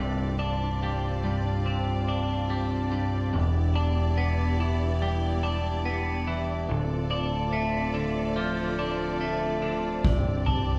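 A wet, roomy studio sound frames this cinematic, euphoric post-rock excerpt in C major at 72 BPM, cut from a longer piece, with the band playing live together over chords moving from Csus2 through Em7 and Dm7 and back. Up front, a bright, twangy twelve-string electric guitar picks compressed arpeggios, underpinned by a growling, overdriven picked bass, while a lush, bowed string section holds smooth, vibrato-laden chords. At 10.0 s a dry, metallic vibraphone struck with hard mallets rings out alongside a soft-mallet drum kit with boomy kick and toms.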